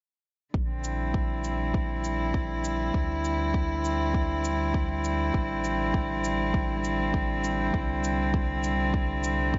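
Heard through a moderate scoring-stage reverb with a dark, rolled-off top, this intimate, moving stretch of piano and strings electronica moves at 100 BPM in a straight 4/4. A close, up-front string quartet, played sul tasto with light vibrato and airy bowing, holds sustained chords through Bb, D9sus4, Am7 and C, while a round, warm sine sub bass sits beneath; both carry sidechain pumping. A deep, layered electronic kick plays with the strings and bass from 0.5 s, and a faint, produced electronic shaker joins at 0.8 s.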